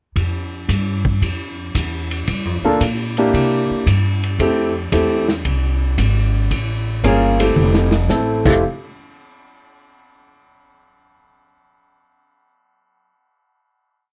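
A short, complete big band swing piece heard through light reverb, with a lo-fi, muffled drum sound from a small room set against an up-front bass and piano. It swings joyfully at 114 BPM in 4/4 in F major, tuned slightly below standard pitch. Upright bass and a vintage drum kit start together at 0.2 seconds. The bass plays a woody, thumpy pizzicato walking line on gut strings, while the drums pair a tight kick and medium-tuned snare with a stick ride cymbal pattern, hi-hat, crash and toms. A baby grand piano with natural, short-sustain tone joins at 2.6 seconds with syncopated comping in rootless voicings over Fsus2, Gm7, C7 and Fmaj9. A drum fill at 7.6 seconds leads into a final hit that closes the piece.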